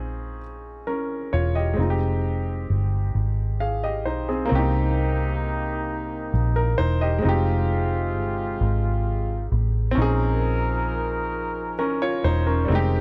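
A dark, round, foam-muted electric bass sits up front in this slow six-eight R&B excerpt with a late-night, sultry mood, alongside clear concert grand piano accompaniment over chords such as Bbm11 and Fm9, while a smooth-topped horn section with light vibrato adds stabs from 4.5 seconds, in a dry, close 1970s-style studio recording.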